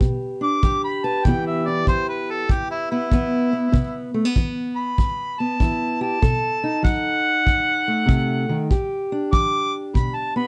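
Acoustic country blues in E minor at 97 BPM with a swung 4/4 feel, brooding and smoky, cut from a longer piece, where a mellow, jazz-style harmonica with light vibrato and scooped notes takes an up-front solo from 0.4 seconds over a boxy, fresh-stringed fingerpicked parlour guitar and a tight kick drum played with brushes, moving through Em7, Cmaj7 and B7 in a dark production with light reverb.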